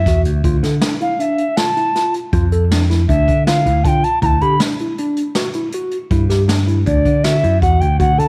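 A reedy alto ocarina and a growly picked electric bass open this brief cut from a longer progressive instrumental, set in an uneven 5/4 with a straight, bright and intricate feel. The clay ocarina carries the melody as a solo throughout, its pure, tongued tone shaded with vibrato and softened highs, sitting up front in the mix. Beneath it, the amped, punchy bass holds the low end, while a mellow tine electric piano, heard through its built-in speakers, adds clean arpeggios from 0.1 seconds. A jazz kit played with brushes joins at the same moment, with a boomy kick, medium-tuned snare and hi-hat captured naturally in a small room. The harmony moves from D minor to Dadd9 at 4.2 seconds, and light studio reverb gives the ensemble a gentle sense of space.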